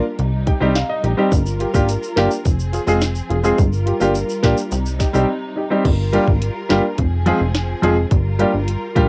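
A clear, worn grand piano sits up front in this tough, hypnotic dancehall fragment, opening with a brief fill and then comping over a looping Cm, Gm7 and Fm progression with deep bass notes and short sustain. A punchy analog synth bass with a plucky, wave-folded tone and fast, decaying notes drives the low end beneath it. The electronic island pop drum kit brings a tight kick, sharp snare, metallic hi-hats and crash cymbal through a cassette tape colour, and the drums drop out from 5.3 to 5.8 seconds before the second section begins. Lush bowed strings hold sustained chords with vibrato far back in the mix, pumping under sidechain compression, while a bright tube shaker played with soft hands joins quietly during the first section. The whole piece is dry, with a home cassette recording character.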